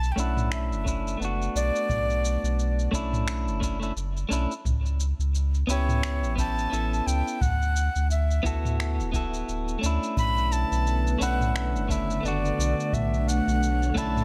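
A digital ambience surrounds this short cut from a longer sunset chillout track, a wistful, smooth piece with a gentle swing in 4/4. A breathy, bright jazz flute carries the melody with a close-miked, reedy straight tone and tongued notes, trailed by delay. Beneath it, a round sine sub bass sits deep and up front, while a clean, picked electric guitar adds compressed accompaniment from 0.2 seconds, softened by a low-pass filter and echoed with delay. The smooth R&B kit brings finger snaps, shaker and toms with an overdriven edge and studio reverb, and an analog-style electronic kick, re-recorded in a small room, thumps in from 0.9 seconds. At 10.2 seconds a soft, silky string machine enters with slow-attack, warbling vintage chords thickened by ensemble chorus, as the harmony returns to Bm11 after moving through A9/C# and D69.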